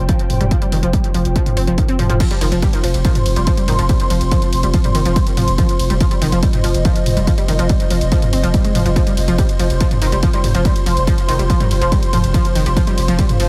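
An echo-heavy mix with light reverb and a digital ambience frames this dark, hypnotic slice of driving peak-time techno in straight 4/4, cut from a longer piece. A heavy, tape-warm electronic kick, re-recorded in a small room, anchors the groove alongside a layered techno kit of crash, ride, toms and warm hi-hats. Underneath, a deep, thick saturated sub bass with overdrive and a low-pass filter pumps against the sidechain, while an eerie, metallic FM drone hovers in the background with chorus and its own reverb. A round, detuned analog pluck carries the riff, bright and overdriven, its short filtered decay trailing into dub echo, and an airy, breathy pad with a nasal, mellow edge sustains above everything. The drop lands at 2.2 seconds and holds through to the end at 13.5 seconds, keeping the trance-like pulse relentless.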